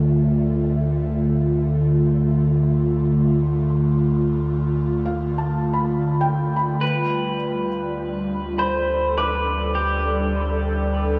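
The recording sits in a vast, echoing cathedral reverb that lends every part a long, wet tail, with a faint touch of small-room ambience underneath. This is a slow, melancholic and serene ambient piece in 3/4 at 51 BPM, cut from a longer work and resting on a single G13/D chord. An airy, breathy pad sits up front, its detuned chorus shimmer and soft noise layer holding sustained chords, while a felt-muted upright piano traces intimate, mellow arpeggios high above, trailed by a diffuse ambient delay. Beneath them a deep, round sine sub bass holds a low D and fades in across the whole passage. At 6.8 seconds a clean electric pedal steel guitar enters up front with a sliding, compressed melody played with fingerpicks, its volume swells blooming into the same diffuse delay.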